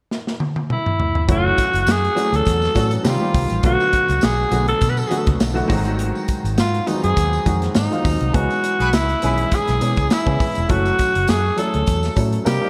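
A growling alto saxophone sits up front, breathy and gritty with vintage vibrato, carrying the melody of a polished 1980s jazz-funk pop groove at 102 BPM with a light sixteenth-note swing and an urban, bittersweet mood. After a drum fill from a smooth, tight-kicked studio kit with a rolled-off top, a dark, worn baby grand with audible action noise and subtle chorus joins a round, foam-muted fingered bass at 1.3 seconds, with a jingly tambourine tucked in the background soon after, as the harmony moves through seventh chords. A distant, very quiet horn section adds a brief line at 8.8 seconds, all within a lush hall reverb and bright digital 1980s production.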